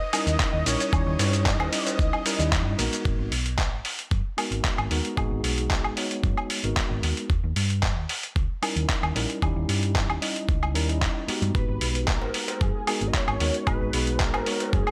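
Nu-disco at 113 BPM in G# minor, sensual and cosmic, this short cut opens on a drop where a thick, detuned unison lead with chorus, tape echo and cassette tape coloring carries the melody over a very quiet, reedy string section that drops out at 3.1 seconds. A mellow tine electric piano with slapback echo and a round, hollow-body picked bass hold the harmony between D#7b9 and G#m9, while a gritty, overdriven sampler-style kit with handclaps, hi-hat, ride, shaker and woodblock sits up front beside a thumpy electronic kick. A distant cowbell appears in the background near the start and again from 12.2 seconds, as the lead returns for the closing bars in a dry, close mix.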